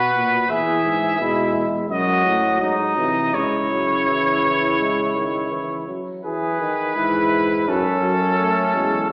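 Heard through an AM-radio haze and bathed in wet recital-hall reverb, this short fragment of a stately, joyful imitative brass canzona sets a clear, punchy trumpet melody with light vibrato up front, a vintage-toned flugelhorn on the second line, and a smooth-topped tuba on the bass, while a mellow euphonium joins with accompaniment at 0.5 s.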